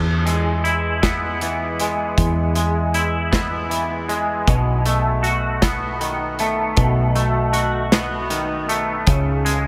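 A slow, straight 6/8 pulse at 52 BPM carries this soaring, euphoric post-rock excerpt in E major, where a loose indie drum kit with a tight kick, medium-tuned snare and hi-hat sits up front in a pumping small room, entering at 0.3 s. A clean, twangy electric guitar plays arpeggios through ensemble chorus and tape echo, moving from E to B7 and reaching C#5 at 9.1 s. Beneath it a dark, round hollow-body short-scale bass is picked, all within a dreamy mix soaked in huge ambient reverb.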